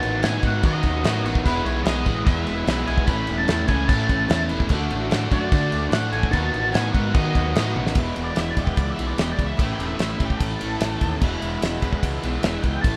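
Confident and sunny, this classic rock excerpt has the feel of a band playing live in one room within a moderate studio reverb, where a growly fuzz fingered electric bass and an up-front, dry, damped 70s drum kit with a fat snare drive riffs from a bright cranked stack guitar in the background and an overdriven semi-hollow guitar, while a very quiet, boxy picked acoustic archtop guitar with finger squeak and a warm, lightly overdriven tonewheel organ on slow rotary fill in beneath the dark octave-fuzz lead guitar, which carries the melody and, after a drum fill at 7.8 seconds, breaks into a solo at 8.0 seconds.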